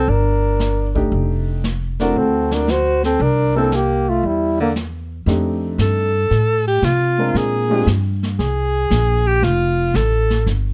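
A swung 4/4 pulse from a brushed drum kit, with a boomy kick and a medium-tuned snare, carries this relaxed, playful stretch of small-group swing and bop, cut from a longer piece. An up-front, pizzicato upright bass with a woody tone and steel strings holds down the low end, while a dark, mellow baby grand piano adds chords beneath the horns. A breathy flugelhorn with a soft attack and a whispered, intimate quality carries the melody, and a warm alto saxophone with vibrato plays a second line alongside it. The flugelhorn stops at 4.7 seconds, and the alto saxophone takes a solo from 5.3 seconds over a harmony moving through extended chords such as F13 and Bb13. The piano drops out at 7.9 seconds, and the close, detailed microphones and dry room keep every part present and natural.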